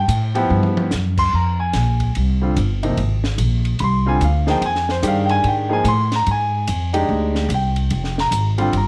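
Modal jazz in F dorian, this hypnotic, spiritual excerpt swings at 146 BPM, its harmony moving from a rootless C voicing to Fm69 at 1.3 seconds and then to Bb6/F at 7.9 seconds. A natural-sounding concert grand piano with deep bass accompanies up front beside a woody, growly pizzicato upright bass strung with steel. A compact cocktail drum kit, dark and smooth with a high-tuned snare, punchy kick and rolled-off top, sits lower in the mix and adds a brief fill at 0.5 seconds, all inside light reverb and small room ambience.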